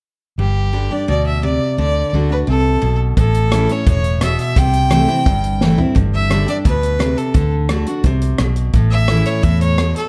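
Honky-tonk and classic country with a down-home, easygoing mood, moving at a brisk 172 BPM in straight 4/4 in G major, cut from a longer piece. A clear, focused fiddle carries the melody with light vibrato from the start, while an up-front jumbo steel-string acoustic guitar supplies bright, full-bodied picked accompaniment, fresh strings and the odd finger squeak audible. Underneath, a vintage foam-muted electric bass sits round and dark in the low register. The natural country drum kit joins at 3.2 seconds with a punchy kick, medium-tuned snare, rim clicks, hi-hat and toms, and a drum fill at 5.6 seconds leads into a new section at 6.0 seconds. The chords cycle through G5, D, A and C6 before returning to G5, D and A, all set in light reverb with a dark, warm production.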